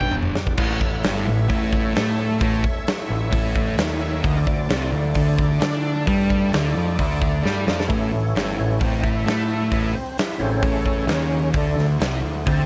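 Swaggering and gritty, this short cut from a longer blues rock power trio and southern rock piece drives along at 131 BPM in a straight 4/4, centred on A mixolydian. A big rock drum kit opens with a fill, sounding dark and smooth in a big room, with a punchy kick, a medium-tuned snare, hi-hat, crash cymbal and toms up front, and another fill arrives at 7.4 seconds. A double-tracked fuzz guitar plays a distorted, picked riff over a growling electric bass whose overdriven tone comes direct and amped, while the harmony moves from G to A and then to D5. An overdriven tonewheel organ holds thick, full sustained chords coloured by chorus vibrato and a slow rotary speaker, then takes a solo from 7.9 seconds over a return to A and D5. Light reverb gives the whole band a touch of space.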